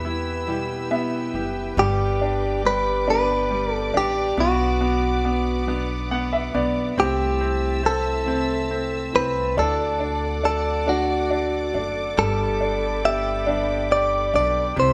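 In a gently swaying 6/8 at 46 dotted-quarter beats per minute, this tender pop ballad in G major unfolds as a short passage cut from a longer piece, moving through Em, G, Bm, Am/C and D before settling on Gadd9. A clean, direct-recorded electric guitar carries the melody up front, its picked tone bright and compressed. A brilliant concert grand piano supports it with polished, short-sustained accompaniment and a deep low end, stepping forward with fills at 0.5 and 5.7 seconds. Beneath, a muted string section holds sustained chords that sound veiled and dark, bowed con sordino with light vibrato and a soft attack. A fingerpicked, plugged-in jumbo steel-string acoustic guitar weaves full-bodied arpeggios in the background, while an upright bass plays woody pizzicato lines. The band sounds as if playing live together in one room, wrapped in a moderate large studio reverb.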